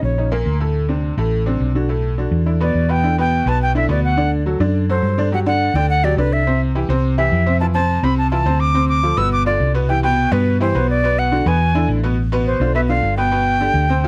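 A dry, close 1970s-style studio sound frames this fiery, driving salsa cut at 210 BPM in 4/4, pulled from a longer piece. A reedy, airy concert flute with vibrato and a crisp attack carries the melody, sounding briefly at the start and then returning from 2.6 seconds to the end, while a worn, woody, slightly detuned upright piano supplies the accompaniment throughout. Underneath, a round, punchy hollow-body short-scale electric bass plays fingered lines up front as the harmony moves through chords such as Em7, D7, Fmaj7 and Cmaj7 before closing on Amadd9, Bdim and G.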